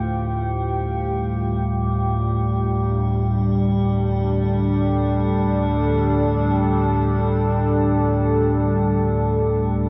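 Dark and desolate, this short excerpt cut from a longer dark ambient drone piece floats in free time, built on a deep, ominous rumbling drone low in the range and a moody, detuned pad of sustained chords, both up front and heard throughout the full 9.9 seconds. A faint, eerie metallic drone with an inharmonic, wave-folded edge hovers on G4, colored by chorus and phaser. The whole sits in a huge, wet reverb with a long tail and carries the worn, warbling pitch drift of old cassette tape.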